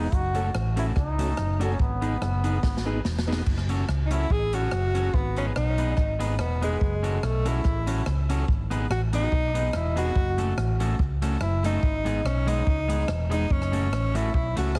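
Ska at 144 BPM in F# dorian with a light swing, this mischievous, driving excerpt opens with a brilliant, distant trombone phrase carrying analog delay over mellow tonewheel organ stabs with slow rotary and chorus vibrato, while a twangy, slightly broken-up electric guitar and a round, hollow-body bass up front play throughout. After a drum fill from 2.6 seconds on a swinging big-band kit with dark cymbals and a punchy kick, a clear, smooth-topped tenor saxophone takes a forceful solo from 4.1 seconds, also touched with analog delay, as the chords alternate between F#m and G#m. The whole mix sits in light reverb with a heavily compressed radio sound and vinyl crackle.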